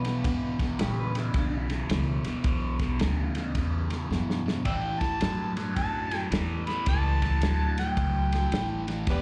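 A crunchy overdriven guitar carries the riff up front in this soulful, swaggering electric blues shuffle, its bright, picked tone colored by phaser and slapback echo from 0.1 seconds. Underneath, a woody upright bass played pizzicato and a dry, muffled soul drum kit with a tight kick, medium-tuned snare and dark ride cymbal set a swung groove at 109 BPM in 4/4. A second electric guitar, slightly broken-up and lo-fi through a small old amp, sits in the background with slapback echo and drops out at 3.2 seconds. After a drum fill, a gritty, amplified harmonica takes the melody at 4.7 seconds, playing a jazz-style solo with light vibrato, tongue slaps and scooped notes, treated with slapback and tape echo. The whole cut sounds like a live club gig heard through the venue's PA, soaked in club reverb, and the harmony moves from E5 to A7 as the harmonica enters.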